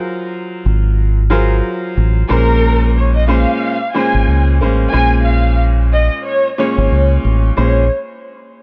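Set in a small room reverb, this dark, gritty boom-bap hip-hop fragment swings on the 16ths as a brilliant, woody upright piano opens alone on a Gbmaj9#11 chord, a round, deep dub fingered electric bass enters up front at 0.7 seconds, and a lush, bowed violin section with vibrato and portamento carries the melody from 2.3 seconds as the harmony shifts to Bbm9.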